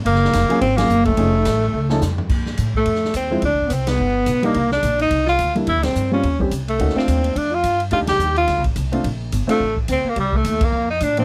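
Swinging and playful, this short cut of small-group swing and bop in Bb major moves at 214 BPM, with a bright tenor saxophone carrying the vibrato-laden melody up front over a breathy, close-miked alto saxophone second line, a woody pizzicato upright bass, a clear, slightly detuned upright piano with short sustain entering at 0.5 seconds, and a big-band drum kit with a boomy kick and hall ambience, punctuated by band accents and a drum fill at 1.7 seconds, set in light reverb with vinyl crackle.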